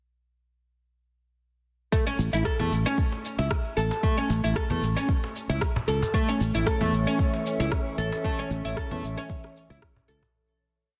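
An up-front oud plays bright, woody arpeggios with digital delay over a tape-warm electronic kick, rim click and cabasa, a growly fretless bass riff with sidechain pumping and a faint cajon in this hypnotic organic downtempo piece, before a warbling lo-fi pad enters at 6.1 seconds and an airy, wind-like held note joins at 6.6 seconds, ahead of the groove fading out from 7.5 seconds.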